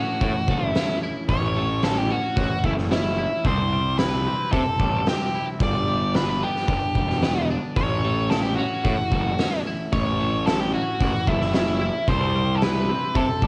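A dry, saturated home cassette recording opens this bittersweet, cathartic excerpt of quiet-loud alternative rock, moving at 111 BPM in a straight 4/4 over A, C and G chords. A dark octave-fuzz lead guitar carries the melody up front, beside a growly, overdriven picked bass and an oversized, low-tuned acoustic kit with a fat snare, punchy kick and gritty hi-hat. Further back, a twangy, clean twelve-string electric guitar plays phaser-tinted arpeggios.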